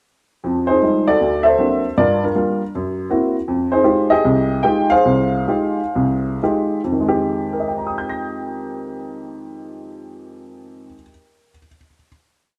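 A woody upright piano opens this short, moody late-night solo jazz piece in F minor, playing motif-based call phrases over a stride bass and close voicings through Fm9, D7b13, Gm7 and Gb7#11, swung in 4/4 and moving freely in rubato between 109 and 161 BPM. The playing slows from 3.5 to 7.0 seconds, settling back onto Fm9 before a final chord rings from 7.0 to 11.3 seconds. The piano sits up front with an intimate, natural tone and audible action noise, set in a moderate stone room reverb, with the live-room recording carrying lossy compression artefacts.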